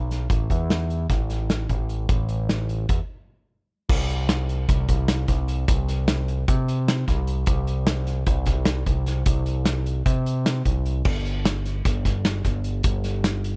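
The recording sounds close and dry, with little reverb, and it comes from a longer piece. This is intricate, wistful math rock with a midwest emo lean, counted in 9/8 at 302 BPM in eighth notes with a straight feel, and tuned slightly low to A4 = 436 Hz. A picked electric bass sits up front with a growling, overdriven tone, heard both direct and through an amp, and ranges from G1 to C3. Beside it, a loose acoustic indie drum kit fills a pumping studio room with dark cymbals, a medium-tuned snare, a punchy kick and hi-hat, its top end rolled off for a warm, rounded feel. A short break runs from 3.0 to 3.9 seconds, and the second passage begins at 3.9 seconds and carries on to the close of the excerpt at 13.6 seconds.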